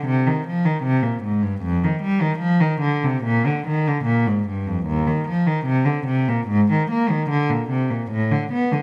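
Solemn and flowing, this short classical fragment, cut from a longer baroque-style suite movement in rubato 4/4, features a single bowed cello played solo and up front with a reedy gut-string tone in period style, ranging from Eb2 to B3 across its 8.8 seconds in a dark production with a wet stone room reverb.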